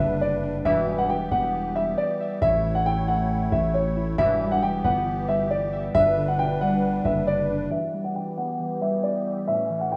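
Hip hop in a half-time feel, melancholic and brooding, with a dark, boxy baby grand piano carrying the melody up front, its action noise audible and its short notes echoing through delay over warbling, detuned lo-fi synth keys and the reedy, shimmering chords of a musette accordion. A deep sine 808-style bass holds long decaying notes until 7.7 seconds, while a juicy, resonant vintage polysynth drops brief chorused stabs at 0.7 and 4.2 seconds. A filter sweep marks the closing section from 7.7 seconds in this cut from a longer piece, all set in a rough home-demo mix with light small-room ambience.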